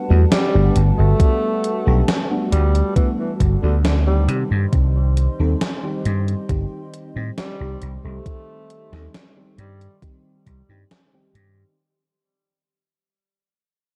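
Woozy and dreamy, this vaporwave fragment drifts at 68 BPM in 4/4, moving from Gmaj9 to Cm under a dark, lightly reverberant production that fades out across its length. A lush, mellow FM electric piano with a soft pad layer plays chorused, tape-echoed accompaniment over a warbling, nostalgic, detuned pad in the background. A round, punchy slap bass sits up front, and a thumpy electronic kick enters at 1.2 s beneath the gated 80s drum machine's hi-hat and gated-reverb snare, while a breathy, whispered tenor saxophone sings an intimate, jazz-style solo with vibrato and scooped notes until 10.0 s.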